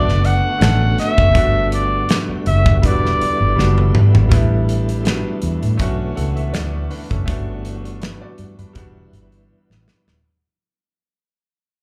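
A clear, punchy flugelhorn carries the melody up front for the first 4.0 seconds of this lush, smooth 1970s-style soul fragment with a lightly swung 4/4 feel, joined by an intimate baby grand piano with audible action noise and slapback echo, a full, lightly overdriven tonewheel organ with key click, chorus vibrato and slow rotary speaker sitting in the background, a dark, round, foam-muted fingered electric bass, and a polished, airy studio drum kit with a tight kick and drum fills, all heard as a live gig through the venue's PA with club reverb, fading out from 4.3 seconds.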